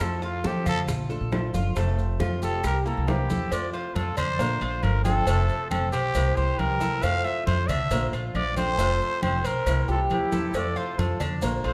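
A moderate large-studio reverb surrounds this relaxed, warm Cuban son and guajira clip in F major at 137 BPM, where a raspy, growling trumpet with light vibrato carries the melody up front and solos over the opening 3.5 seconds while a dark, woody pizzicato upright bass anchors the F, Bbmaj7 and C7 changes. A boxy, fingerpicked flamenco guitar with audible finger squeak and a metallic, double-strung Cuban tres playing arpeggios fill in the harmony, as congas, tight high-tuned bongos and cowbell, quiet claves and grainy maracas keep a background pulse. An airy, hollow concert flute slips in as a second line at 9.9 seconds, just before this cut from a longer piece ends.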